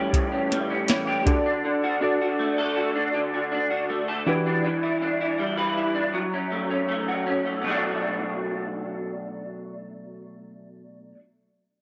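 A moderate echo-chamber reverb with a 2.1-second tail hangs over this short, hazy cut from a longer indie and bedroom pop piece, giving it a lonely, distant air. It moves at 80 BPM in a straight 4/4 in B minor, with the harmony passing through A7, D, Em7 and F#m before settling on Bm7 as a second section opens at 7.6 s. Up front, a bright, twangy electric guitar through a small old amp carries the accompaniment for the whole passage, its picked tone slightly broken-up and lo-fi, thickened by ensemble chorus and vibrato. Soft, round electric-piano-like synth keys with a dark, warbling vintage chorus join the guitar at the start and stop at 4.7 s. A soft vintage rhythm box, dry and tape-warm with a deep kick, tonal snare and metallic hats, sounds only briefly, ending at 1.4 s.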